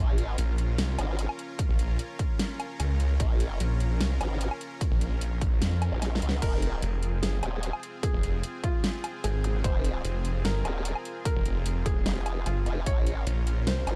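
A dark, warm digital ambience frames this aggressive, menacing slice of heavy wobble dubstep in a half-time feel, where an up-front formant-sweep wobble bass with chorus and overdrive and a growling, distorted saw bass dominate over a lush, airy supersaw pad that pumps against the sidechain. A layered dubstep drum kit with a huge snare, metallic hats, crash and woodblock drives things along, joined at 1.6 seconds by a punchy electronic kick, and a drum fill leads into the moment at 6.4 seconds when a soft, muted felt upright piano enters with a mellow, intimate melody trailed by delay. A brief electronic zap flickers in the background at 9.4 seconds, while across the excerpt the chords move from B-flat minor to F minor and back.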